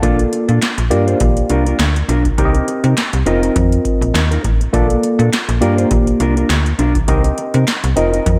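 Early-eighties boogie funk with a feel-good, smooth mood, this short cut from a longer piece swings gently over a Bbmaj7, Gm7, Cm7, F7sus4 progression, all bathed in a lush hall reverb that gives the mix a dreamy glow. A worn, slightly out-of-tune tine electric piano with phaser carries the chords up front, while a snappy FM bass with a metallic, slap-like attack anchors the low end and a dark, fingered electric guitar through analog chorus plays a mellow riff. A booming analog drum machine, overdriven and re-recorded in a small room, drives it all with a deep kick, crisp snare, metallic hats and handclaps.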